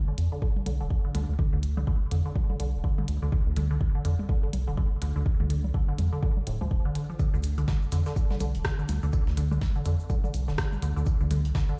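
Minimal techno at 124 BPM in D minor, cool and sparse, with a swung 16th-note feel in this short cut from a longer piece. A deep, up-front electronic kick anchors the groove alongside a rubbery, hollow square-wave bass that sits dark and bouncy in the low end with sidechain pumping. Above it, a juicy, squelchy blip pluck plays a resonant riff with a fast attack and short decay, colored by phaser and tape echo, while a minimal click kit adds clicky hats and rim clicks. Tape-warm electronic toms and congas sit in the background with their own echo. At 7.2 seconds a gritty, pitched-up breakbeat-style kit with a high-tuned snare, hats and tambourine slips in quietly, joined by a grainy, bright tube shaker, all heard through a big sound system in a bare stone room.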